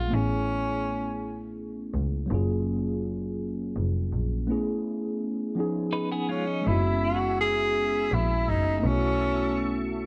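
A breathy tenor saxophone leads this slow R&B piece in 6/8 at 55 BPM. Its soft-attack, scooped notes carry a whispered jazz vibrato and a slapback echo over a mellow tine electric piano with analog chorus and a clear double bass, bowed sul tasto with an airy, intimate tone. The saxophone sounds distant and roomy yet sits up front, and after a brief opening phrase it returns at 6.3 seconds. Around 5.9 seconds a clean, picked electric guitar adds a short, compressed second line through tremolo. From 6.6 seconds a smooth tonewheel organ holds sustained chords in the background, colored by chorus vibrato and a slow rotary speaker. The harmony moves from Amaj9 and F#maj9 through C#9 to F#9sus4 and B9sus4 under a light studio reverb, setting a warm, sensual mood.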